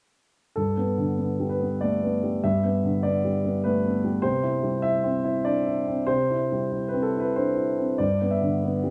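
Neoclassical minimalist piano in a rubato 3/4, intimate and peaceful, cut from a longer piece. A solo concert grand plays from 0.6 to 8.9 seconds, its deep bass, open tone and long sustain placed up front in a moderate large-studio reverb as the harmony moves from G to C and back to G.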